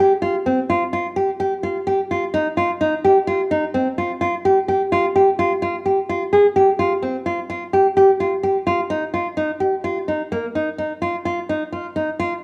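A fingerpicked nylon-string guitar opens this short cut from a longer contemporary instrumental piece, playing alone and sitting up front in the mix. The mood is pensive yet urgent, carried by a straight feel in an uneven seven-beat metre. The guitar's tone is deep and classical, with audible finger squeaks, and it stays in a compact middle register. Around 5.6 seconds the music moves into a second section, which runs until the cut ends at 12.4 seconds. A moderate recital-hall reverb surrounds the instrument, while a worn, cassette-like tape character adds a warbly pitch drift, heard against a tuning set slightly below standard concert pitch.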